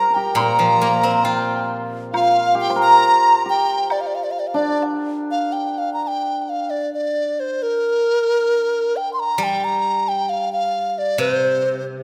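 A moderate recital-hall reverb surrounds this wistful, tender Chinese chamber excerpt at a rubato 66 BPM in 2/4, where a mellow, hollow large dizi with vibrato and a buzzing membrane sings the melody up front, joined until 4.8 s by a bright, reedy second dizi, while a shimmering hammered dulcimer, a silvery steel-string zither played with fingerpicks and returning at 9.4 s, and a close, dry woodblock in the background fill out the texture.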